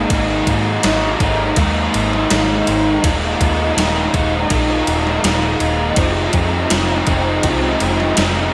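Rock shading into shoegaze and dream pop, blissful and wistful, this short excerpt sets an up-front, crunchy, double-tracked guitar riff with analog chorus over a dark, round, foam-muted fingered bass and a thumpy, overdriven, sampler-style 80s drum machine of kick, ride and gated-reverb snare, with the harmony moving through Absus2, Ebsus4 and Fm7 in a light reverb.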